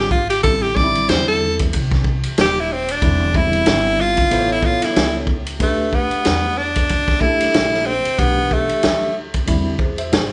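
A nocturnal, cool jazz-hop groove with a swung hip hop feel, cut from a longer piece and heard as if played live in one room, under vinyl crackle and a dark, rolled-off sound. An edgy, forceful tenor saxophone sits up front with scooped notes, soloing through the first 5.6 seconds and dropping out at 9.2 seconds, over a mellow, clean tine electric piano heard through its built-in speakers. Beneath, a woody, thumpy pizzicato upright bass and a vintage drum kit with a punchy kick and dark cymbals carry the groove through harmonies such as Am7, Dsus2 and E7alt.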